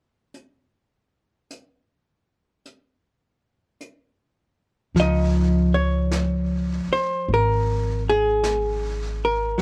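A romantic, intimate jazz ballad excerpt at a slow 52 BPM in Db major with a swung feel, opening with brushed snare and hi-hat on a naturally recorded kit in a small room. At 4.9 seconds a woody, pizzicato upright bass enters up front, joined at 5.0 seconds by a dark, clean, compressed hollow-body electric guitar, also up front, on a Dbadd9 chord. Light reverb and the warbly pitch drift of worn old cassette tape give the sound a nostalgic haze.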